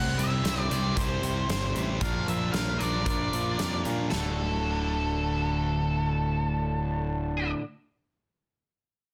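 A straight 4/4 pulse anchors this cathartic, anthemic stretch of quiet-loud alternative rock, cut from a longer piece. A huge arena drum kit with a punchy kick and a medium-tuned snare fills a big, natural room, playing hi-hat, kick and snare from 0.2 seconds until it stops at 4.2 seconds, just as the harmony shifts from C and Bb to D. Up front, a bright, cranked stack guitar plays a picked, overdriven riff while a dark octave-fuzz lead guitar carries the melody with slapback echo. Further back, a slightly broken-up electric guitar plays fingered arpeggios, also touched by slapback echo. Beneath them, a picked electric bass sounds direct and growly, and light reverb and a dense, heavily limited modern master keep the whole mix pressed tight and loud.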